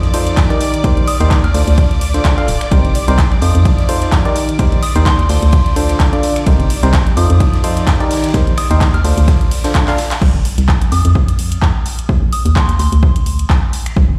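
An energetic, soulful piano house passage opens mid-stream on a full drop, with a biting, barking FM electric piano riff riding over a hollow, organ-like FM bass and a punchy, tape-warm electronic kick that enters at 0.4 seconds and sits up front. Behind them, a rich studio string section holds smooth, vibrato-laden chords, pumping with the sidechain like the bass and electric piano, while the piano's chorus and dub echo give its percussive attack a shimmering tail. The drums layer an overdriven house kit of finger snaps, handclaps, hi-hat and crash, re-recorded in a large room, with a dark, gritty, low-tuned acoustic kit of snare, hi-hat and ride buried far in the background. From 1.1 seconds a soft, pure FM bell traces a mellow high melody through chorus, phaser and dub echo, floating over the swung groove as the harmony circles among minor-seventh and dominant chords. A short drum fill at 9.9 seconds leads into a sparser stretch at 10.2 seconds, where the strings, electric piano and acoustic kit drop away and suspended chords carry the bell, bass, kick and house kit onward. 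The whole mix carries the echo of a big sound system booming in a bare stone room.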